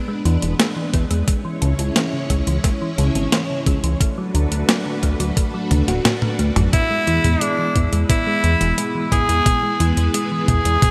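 A straight 4/4 pulse at 88 BPM drives this romantic, uplifting synthwave excerpt in E mixolydian, with a clean 12-bit drum machine setting hi-hat, a medium-tuned snare and toms up front from 0.3 seconds, and an overdriven, thumpy electronic kick joining at 0.9 seconds. A glossy, up-front chorused synth bass anchors the low end while a lush string machine holds full-bodied sustained chords that pump against the sidechain, moving from E to C#m to Bm7/D. Above them, a round, tine-like synth pluck with chorus and delay spins gentle arpeggios. A drum fill starts at 5.7 seconds, and the kick drops out briefly at 6.0 seconds. Then at 6.7 seconds the harmony returns to E, a filter sweep moves across the arpeggio sound, and a raspy tenor saxophone takes the solo melody with light vibrato, scooped notes and delay. The bright 1980s-style digital production sits in a moderately lush hall reverb.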